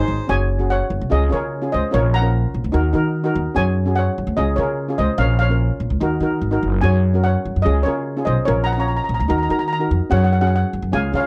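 A shimmering, airy steel pan carries the melody in this sunny, festive calypso, entering at 0.3 s over a second, mellow steel pan that plays accompaniment with a boxy small-room sound and sits up front. A woody, thumpy pizzicato upright bass on gut strings anchors the cycling Gbsus2–Db–Bbm–Ebm progression. The dry, close 1970s-style studio sound frames this short cut from a longer piece.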